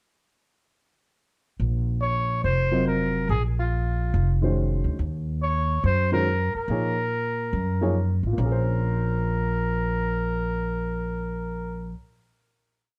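A woody, growly upright bass opens at 1.6 s in a two-feel, joined at 2.0 s by a mellow, distant trumpet with plate reverb spinning motif-based period phrases and then by baby grand piano comping syncopated quartal voicings, in a spiritual, hypnotic modal jazz piece in Bb minor, swinging at 142 BPM over Bbm9 and Ebm7 before settling on a final Bbm9 from 8.4 s in a dark, lightly reverberant mix.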